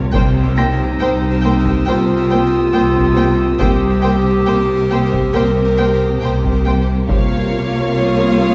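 Uneasy and eerie, this short excerpt from a suspense film score sets a mellow, close-miked solo clarinet entering at 0.6 seconds against lush bowed strings (a violin melody, a smooth-topped second violin line, a high violin texture, in-the-background violas, expressive cellos and a dark, woody double bass section) over hard-stick taiko drums, a soft felt-muted upright piano, and a pulsing, detuned gated texture with chorus, all set back in a wet scoring-stage reverb with vinyl crackle as the harmony moves from Cm7 to Bbmadd9/C.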